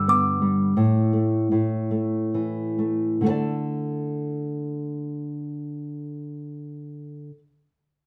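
In a straight 3/4 at 62-90 BPM that slows across the first 3.3 seconds, this innocent, sleepy children's lullaby, cut from a longer piece, opens with a delicate, tinkling, close-miked music box melody that stops at 2.3 seconds, over an up-front, thumb-plucked classical nylon-string guitar accompaniment that continues to 7.4 seconds through G, A5 and D5 chords, recorded as a band playing live in one room with moderate studio reverb.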